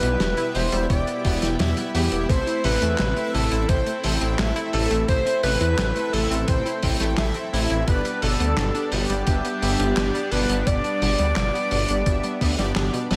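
Synthwave with a nocturnal, cinematic mood, this short passage is cut from a longer piece and moves at an unhurried, straight 4/4 pulse over Em, Am and G. A jazz-style alto saxophone carries the melody with vibrato, subtone and scooped notes, its smooth top trailed by tape echo, while a very quiet, airy and dreamy synth lead shadows it as a second line with a moving notch and its own vibrato. Behind them, a soft detuned supersaw holds sustained chords through a phaser with sidechain pumping, an analog pluck spins round, short-decay arpeggios with chorus and tape echo, and fat, wave-folded synth brass adds bold stabs with ring modulation and filter sweeps. A thick, lush detuned saw bass sits up front with chorus, anchoring the low end. A muffled, lo-fi vintage kit of handclaps, hi-hat and a medium-tuned snare rides on gated reverb, joined at 0.9 s by a thumpy, sampler-style electronic kick that carries a tape-warm, small-room character and drops out at 12.6 s, all framed by a light reverb.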